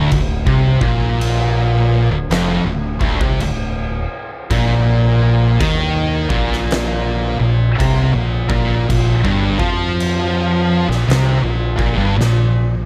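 Soaked in studio reverb, this brooding, sludgy stoner and doom metal fragment sets a pair of fuzz-drenched guitars in the background, one warm and one dark, beneath a bright, double-tracked distorted guitar riff, a growly, direct fingered electric bass with overdrive, and an oversized, low-tuned acoustic drum kit with a boomy kick, fat snare, dark crash cymbals and a gritty, pumping room sound that closes on a drum fill at 12.2 seconds.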